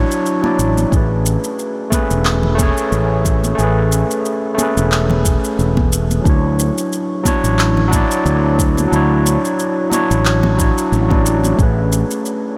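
This sunset chillout excerpt opens at 0.0 seconds with an overdriven tine electric piano and a fretless electric bass, both placed up front. The piano sounds barky and gritty through a combo amp, with tape echo on its sound. The bass is bright, growly and direct. Moments later an electronic shaker with layered handclaps enters, followed by damped, high-tuned congas that settle into the background. A deep, layered electronic kick drum arrives at 0.9 seconds. At 90 BPM in 4/4 with a gentle swing on the sixteenths, the piece sits in A major, tuned to A4 = 438 Hz, and moves between Dmaj9 and Amaj9. A huge ambient reverb soaks the dreamy mix, giving the blissful mood a hazy glow until the piano ends at 12.6 seconds.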